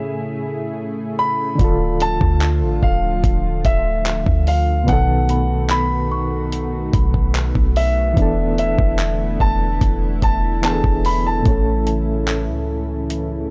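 A dreamy, romantic contemporary R&B piece at 73 BPM in A major opens with an intimate concert grand piano carrying the melody through analog delay over mellow, chorused and tremolo-laden electric-piano-like synth keys and a thick, warbling unison pad with sidechain pumping, before a deep, boomy 808-style bass and a gritty, up-front soul sampler-style drum kit of thumpy kick, hi-hat and handclaps arrive at 1.6 seconds, joined at 2.4 seconds by a delicate, bell-like celesta in the background, all in a dry hardware recording moving from Amaj7 through Dm, B7 and E7sus4 to A.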